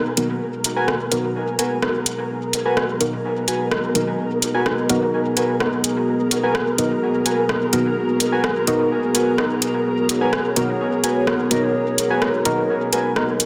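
A straight 4/4 pulse at 127 BPM drives this deep, meditative dub techno passage in G# minor, cut from a longer piece and resting on a single G#m9 chord. The deep house drum kit arrives at 0.2 seconds, placing metallic hi-hats and a rim click up front with a layered, overdriven edge and the air of a large room. Alongside it, a moody analog pad holds sustained chords from the start, its detuned square and sawtooth tones given ring modulation, a slow attack and a long release, while a flickering, grainy granular texture glimmers in the background. Soft, nasal chord stabs with a sub octave and filter sweep decay through chorus, phaser and dub echo, and from 0.8 seconds a warbling, nostalgic lo-fi synth keys riff adds pulse-wave colour through a low-pass filter and its own dub echo. A lush hall reverb surrounds the mix, and the master is dense and heavily limited in a modern style.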